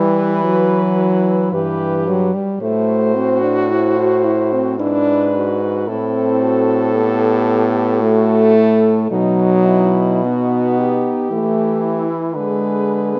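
In a slow 3/4 at 55 BPM, the beats fall unevenly and the time bends freely with rubato, giving this classical horn quartet an elegiac, solemn, lyrical character in E minor. Four French horns play together from 0.0 to 13.2 seconds. The melody comes from a warm horn with vibrato and a smooth top, set back in the background. A clear-toned horn with light vibrato carries a second line, and a second clear horn holds the bass in the low register. Most prominent is a dark horn with a soft attack, sitting up front in the middle accompaniment. The harmony moves from E minor through A minor, E over G#, A minor seventh and B before settling on E minor and a rootless E7 over D. A light reverb and a mellow, rounded treble surround this passage, which is cut from a longer piece.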